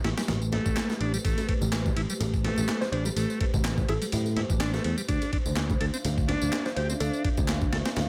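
Up front, a gritty, compressed sampler-style breakbeat kit with a thumpy kick, ride and medium-tuned snare drives this swaggering, funky 125 BPM breakbeat excerpt in A minor, alongside a growly, punchy picked bass, a reedy combo organ riff with heavy vibrato and delay, a moody sawtooth analog pad with chorus and sidechain pumping, ringing bongos and congas in the background, layered electronic tambourine and handclaps, and a woody FM mallet-like pluck melody with phaser and old-record colour that enters at 2.8 s, all over Am9 shifting to Dm9 at 5.1 s in a digital ambience.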